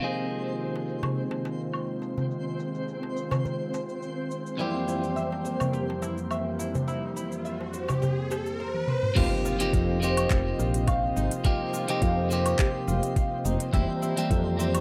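Organic downtempo with a mystical, meditative mood, opening on a bright, picked clean electric guitar up front with phaser, delay and sidechain pumping, over a soft, breathy chorused pad, a tape-warm electronic kit with crisp hats, cabasa, handclaps and woodblock, a faint twinkling granular shimmer, and a close, dry metal-shell darbuka struck with hard hands. A plucked, woody oud with doubled strings enters at 4.6 seconds playing delayed arpeggios, while an electronic riser builds toward a drum fill and an impact at 9.2 seconds. There a growly, round fretless bass with tube saturation and lush chorus arrives alongside a gritty, thumpy kick, all in a rough home-demo mix with light reverb, cut from a longer piece.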